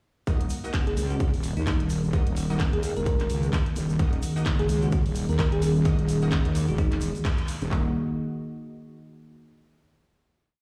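This bouncy, aggressive bass house track opens at 0.3 s straight into the drop: a heavy, saturated wobble bass sits up front over a tight four-on-the-floor kick and claps, with a second layer of programmed hats and backbeat claps, a grainy hand-played tube shaker, and a deep, moody analog pad sustaining chords in the background. Bold, punchy orchestra-hit-like synth stabs land as sparse echoing chords moved in parallel, and at 0.9 s a sparkling, bell-like FM electric piano adds short warbling phrases. After a full-band accent at 7.2 s, the piece closes on a final chord from 7.7 s, all heard through a big-system sound with some studio ambience.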